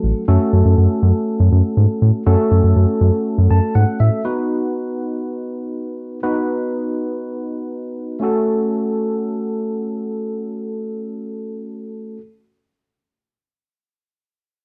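Synth-pop with a cool, nocturnal mood, cut from a longer piece, where a clean, up-front tine electric piano with analog chorus plays the F#m and B chords throughout and adds a fill at 3.3 s, while a round, deep, dark analog bass holds the low end until 4.1 s, all set in a wet small room on a home cassette recording.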